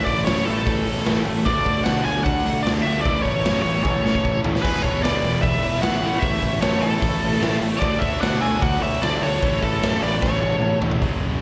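Hard rock with a heavy, menacing edge, cut from a live gig heard through the venue's PA in a recital hall with light reverb, where an up-front biting lead guitar with overdrive, slapback echo and analog delay carries the melody over very quiet riffs from two bright distorted electric guitars (one double-tracked) and a dark overdriven electric guitar, a growly fuzz fingered bass and a gritty, punchy raw garage drum kit that fills at 3.8 and 10.2 seconds, while an octave-fuzz lead guitar adds a second line in the background from 3.8 seconds.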